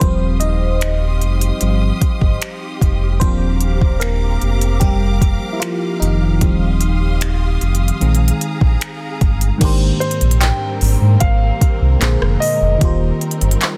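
A glassy, bell-like FM electric piano with chorus and phaser takes the lead over lush, vibrato-rich bowed strings, a deep sine sub bass with octave and an up-front, overdriven electronic drum kit of soft kick, crisp hats, finger snaps, handclaps and rim clicks in this romantic, tender contemporary R&B cut from a longer piece at 75 BPM in Eb major, before a natural grand piano with delay carries the melody from 10.0 s over an Abmaj9#11 and Bb9 turn that settles on Eb6, all in a dense, heavily limited modern master with little reverb.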